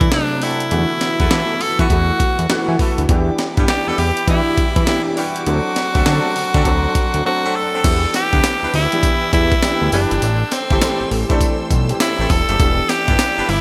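A bright, 1980s-style digital production with a lush hall reverb frames this bouncy, confident stretch of new jack swing R&B, cut from a longer piece in E minor at 101 BPM, tuned to A4 = 444 Hz, with a swung sixteenth-note feel in 4/4. Up front, a raspy, edgy tenor saxophone carries the melody in a forceful pop style with light vibrato and a digital delay. Alongside it, a gritty, compressed, sampler-style breakbeat kit with a thumpy kick, medium-tuned snare, hi-hat, tambourine and crash sits up front through gated reverb. A fat, detuned sawtooth analog bass with a filter sweep holds the low end, and a warm baby grand piano, thickened by ensemble chorus, fills in the accompaniment. Mellow, soft-attack horn stabs in a jazz style with octave doubling sit in the background from 0.4 s. At 3.1 s a rich, distant string section adds very quiet bowed sustained chords, as the harmony moves from D7 through Em7 and on to Am7 once the second section begins at 7.8 s.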